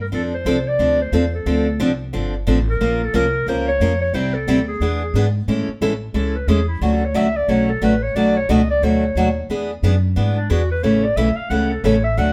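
Lively and charming, this jazz manouche snippet swings at 179 BPM in F major, with a woody, thumpy pizzicato upright bass on gut strings and a bright, picked steel-string acoustic guitar with audible finger squeak both sitting up front, while a distant, roomy clarinet sings the melody with vibrato and scooped notes before the music moves to A major at 5.5 s for a jazz-style clarinet solo over an Amaj7 to E7 progression, all in a moderate studio reverb that captures the band playing live in one room.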